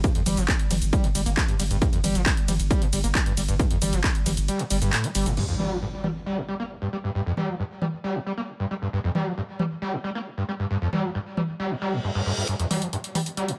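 Industrial and relentless, this driving peak-time techno cut at 135 BPM opens on a drop where an overdriven, up-front heavy electronic kick pounds until 4.1 seconds beside a deep, saturated sine sub bass that pumps with sidechain and holds until an electronic impact lands at 5.4 seconds, while a layered techno kit of crash, ride, hi-hat, handclaps, shaker and toms carries on throughout, all beneath a screaming, squelchy sawtooth acid riff with resonant filter sweeps, distortion, lush chorus and digital delay, until a reverse cymbal and riser usher in a build-up at 12.5 seconds.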